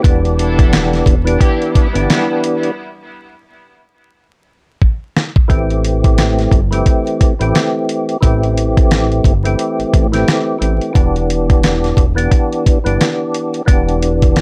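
A swung 88 BPM boom-bap groove in 4/4 drives this dark, reflective hip-hop excerpt in A minor, with a gritty, compressed sampler-style drum kit of thumpy kick, fat snare and hi-hat sitting up front, a break from 2.8 to 5.5 seconds, and a drum fill closing it. A fat analog bass holds the low end under a percussive tonewheel organ with key click, chorus vibrato and a slow rotary speaker, its sound filtered, tape-worn and set in plate reverb, moving from Em7 to Am7 at 5.5 seconds and back. Early on, a distant, lush string section adds brief bowed stabs with delay from 0.4 to 2.4 seconds, all over a bed of vinyl crackle.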